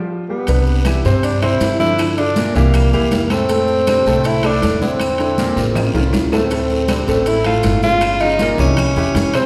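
Afro-Cuban jazz with a sunny, danceable lift, this excerpt opens on a brief break where a breathy, subtone tenor saxophone carries the melody up front with light vibrato, over a clear, intimate grand piano whose action noise is audible. From 0.5 seconds a dark, thumpy pizzicato upright bass on gut strings joins, with bright, damped congas, ringing metal-shell timbales, a raspy guiro and grainy maracas set in the background, woody claves entering very quietly at 0.9 seconds. After a colourful Bbmaj9#11, a drum fill at 5.8 seconds arrives with an Aaug chord, and the whole band sits in the wet reverb of a church or concert hall.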